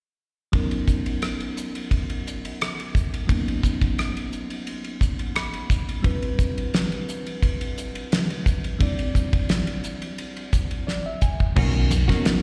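This bright, slick electric jazz fusion excerpt opens at 0.5 seconds with a bell-like tine electric piano comping on Bmaj9 chords, its clean tone coming through built-in speakers with a slapback echo, alongside a damped 70s drum kit that sits up front with a fat snare, tight kick, dark cymbals and a dry, airy polish. At a straight 87 BPM in 4/4, the harmony moves to Cmaj9 at 6.0 seconds, with the electric piano adding fills leading into that change and again near the end, while the drums play a fill as the harmony drops away into a brief chordless passage at 11.2 seconds. When Bmaj9 returns at 11.6 seconds, a woody fretless bass arrives with a round, punchy, hollow-bodied low note, joined by short stabs from a clean, compressed electric guitar treated with lush chorus and slapback echo. Low-tuned congas with a thin skin and hard hands flick by in the background just before the clip cuts off. 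The whole performance sounds like a live gig heard through the venue's PA, with light reverb, small room ambience and the larger reverb of a recital hall.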